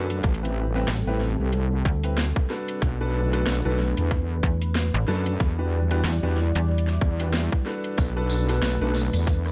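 A dry, echo-heavy mix dusted with vinyl crackle frames this playful, funky glitch hop excerpt at 93 BPM in B phrygian, swung on the 16ths and moving through Am7, Bm7 and Em7. A heavy, detuned wobble bass and a snappy, metallic FM slap bass, present from 0.9 to 7.0 seconds, sit up front beside a tight, overdriven electronic kick and a layered kit of cracking snare, rim clicks and bright hi-hats. Beneath them, a deep, moody analog pad with chorus and sidechain pumping holds sustained chords, a boxy grand piano fires filtered stabs through tape echo, and a jingly tambourine joins at 8.0 seconds.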